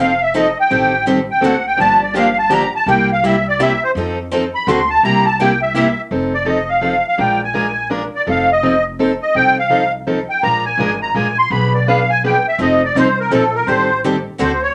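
Charming and playful, this brief cut from a longer jazz manouche piece swings briskly at 167 BPM in 3/4 in F mixolydian, with a reedy, shimmering musette accordion carrying the melody up front over a warm, fresh-stringed plugged-in parlour guitar, a bright, boxy second picked guitar that drops out at 5.9 seconds and returns at 12.6 seconds, and a woody, thumpy gut-string upright bass, all set in a wet club reverb as the harmony moves from F7 through Am7b5, D7, Gm7 and C7 before turning to Bb7 and Bdim7.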